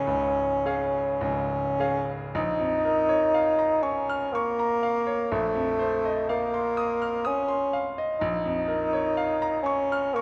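A solo bassoon carries the melody in this tender, serene romantic classical fragment, its warm tone shaded by a light vibrato and placed up front in the mix. A bright, brilliant grand piano accompanies throughout, reaching from deep bass notes to high treble with a natural, short-sustained sound. The duo moves at a slow 62 BPM in 3/4 with a rubato feel, in B-flat minor and tuned to A4 = 441 Hz. The harmony opens on D-flat before settling into B-flat minor at 2.3 seconds, when a new section begins, then passes through F7 over B-flat at 5.3 seconds and returns to B-flat minor. A wet scoring-stage reverb with a 1.8-second decay wraps the pair in a spacious, glowing ambience.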